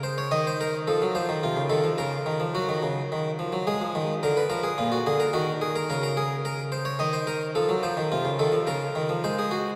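A round, plucked, up-front solo harpsichord, close-miked with a single set of strings, plays a contemplative yet driving baroque-style two-part invention in Eb minor at 108 BPM in 3/4, moving through chords such as F7, Bbm/Db and Ab7 before this cut from a longer piece ends at 9.8 seconds, all set in a resonant church reverb.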